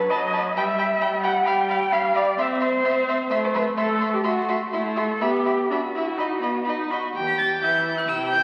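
Dramatic and restless, this quick classical-period movement for string quartet in E minor, cut from a longer piece, runs at 127 BPM in 4/4 with uneven, rubato beats and a tuning of A4 = 436 Hz. Two clear, smooth violins with vibrato carry a high, close melody and a lower second line, while the rich viola fills in the accompaniment and an up-front cello supplies an expressive bass with vibrato and portamento. A wet concert-hall reverb and the crackle of a very old 78 rpm record surround the quartet, and the harmony settles on E minor as a new section begins at 7.2 seconds.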